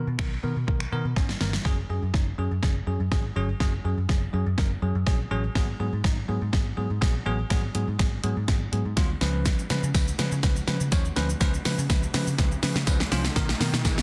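A straight 4/4 dance-pop pulse at 123 BPM drives this euphoric, upbeat fragment cut from a longer piece in F# major, with the chords moving from Bmaj7 through F#sus2, G#m7 and C#7 before landing back on Bmaj7. A punchy, up-front pop drum kit of kick, snare, hi-hat, shaker and finger snaps comes in at 0.2 seconds, its electronic, layered sound carrying a fat snare with soft clipping and the air of a large room, and a drum fill at 1.2 seconds leads into a long build-up. Underneath, a dark, round, foam-muted picked electric bass and a bright, bell-like tine electric piano both breathe with sidechain pumping, the piano clean and direct against the amped bass. A jingly, very quiet tambourine sits distant in the mix from 9.9 seconds, and an electronic riser enters in the background from 11.6 seconds to push the build further. Light digital reverb frames the parts, and the master is dense and heavily limited in a modern style.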